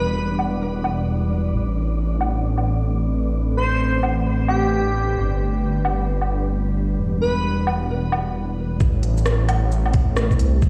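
Future garage at 132 BPM in A minor, swung on the 16ths and cut from a longer piece, with a nocturnal, rainy mood over Em, Amadd9 and G chords. A deep, dark ambient pad with chorus and pumping sidechain sits beneath a menacing, detuned saw bass that swells up front, while a breathy, wind-like noise texture hovers in the background. An overdriven electronic kit with crisp, filtered hats, rim clicks, shaker and woodblock comes in at 0.4 seconds. After a brief flicker at the very start, an airy, dreamy lead returns at 3.6 seconds to sing with vibrato, chorus and tape echo. The kit is joined at 8.8 seconds by a muffled, thumpy kick, all set in a stone-room reverb with a cassette tinge.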